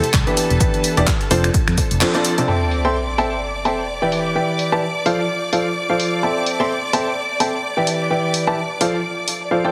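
Joyful and feel-good, this piano house cut at 128 BPM in C major swings lightly as a clear, woody, slightly detuned upright piano riff with digital delay sits up front over lush, bowed violin-section chords, both pumping with the sidechain, while a punchy electronic kick, a dark, round fingered electric bass and a very quiet, gritty sampler-style kit of hi-hat, shaker and snare drive the opening until about 2 s, a sub drop lands at 2.5 s, and a layered house kit of finger snaps, handclaps, hi-hat and crash, low-pass filtered and heard in a large room, carries on through a heavily compressed, radio-like mix with plate reverb over an Em7, F6 and C6 progression.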